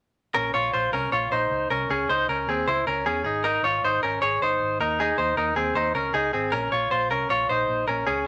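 A clean electric guitar, recorded direct and sitting up front, carries this short indie pop excerpt with picked arpeggios that ring bright and twangy, their compressed, scooped tone giving the line a crisp edge. Beneath it, a vintage fingered electric bass plays low in the mix, its foam-muted sound dark, round and amped. The tempo moves along at 156 BPM in a straight 4/4, and the mood feels bright and youthful. The harmony steps from Bbm through Dbm, Absus2 and Eb5 before returning to Bbm as a second section begins at 6.5 seconds. A wet studio reverb surrounds the recording, which is cut from a longer piece, with the guitar playing from 0.3 to 8.3 seconds.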